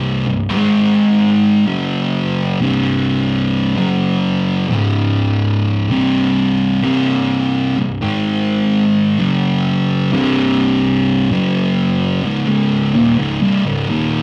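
Hypnotic and heavy, this slow metal fragment of a longer piece moves at 64 BPM in a straight 4/4, carried entirely by a single picked, double-tracked fuzz guitar that sits up front with distortion between C2 and Ab3. The guitar cycles through power chords on C5, Ab5, F#5 and Db5, then plays an unchorded stretch from 12.2 seconds until the fragment ends at 14.2 seconds. A wet small-room reverb and rough rehearsal-room sound give the playing a raw, close-quarters feel.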